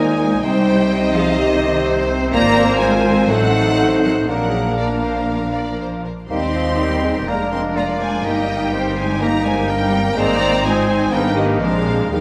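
Lush, vibrato-laden violins carry the melody high above a second violin line, a bright, distant oboe, a dark clarinet and an airy, hollow flute group in this spirited, dramatic fast romantic orchestral movement in Eb major at 124 BPM with a rubato feel, while rich violas, a soft-attacked bassoon, mellow French horn chords, focused cellos and clear double basses fill out the accompaniment and bass in a wet scoring-stage reverb, moving from Cm toward a closing Bb9 at 11.6 seconds.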